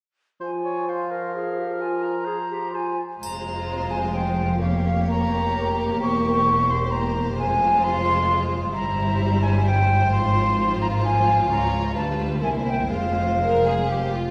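Heard in a reverberant concert hall, this restless, dramatic fragment of a romantic orchestral movement in triple time, played with flexible rubato, opens with a brief woodwind passage of airy metal flute, clear distant clarinet, smooth oboe and dark up-front bassoon, before lush bowed violins take the vibrato-rich melody from 3.2 seconds over a second violin line, rich violas and expressive cellos and double basses, with a dry touch of triangle and the flute carrying on until 14.1 seconds.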